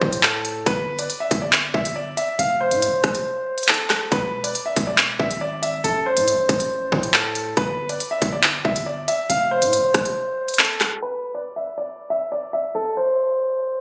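A mellow, vintage baby grand piano with long sustain, softened by a low-pass filter and echoed by digital delay, carries the melody up front over an Am, G5, F, E progression in this tense, dark half-time hip hop drill cut at 139 BPM, backed by a punchy, decaying sine-based 808-style bass with a noise layer and fast attack, and an electronic drill kit of hard-clipped kick, crisp hi-hats, handclaps and rim clicks whose kick briefly drops out, before the bass stops at 10.2 seconds, the drums at 10.9 seconds, and the piano plays alone to 13.8 seconds, all heard through a phone-in-the-room recording with light reverb, compression and lossy artefacts.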